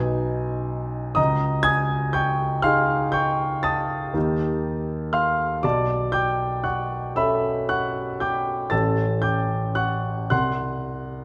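A slow, rubato sway in 9/8 carries this wistful, nocturnal fragment of impressionist solo piano, drifting through colored harmonies such as C#add9, D#add9 and Bm9 before reaching A7, with the harmony dissolving into an unchorded close near 10.3 seconds. The concert grand sits close and intimate, with a clear, polished tone, deep bass, long sustain and the mechanical noise of its action audible. A wet recital hall reverb surrounds it, and the passage is cut from a longer piece.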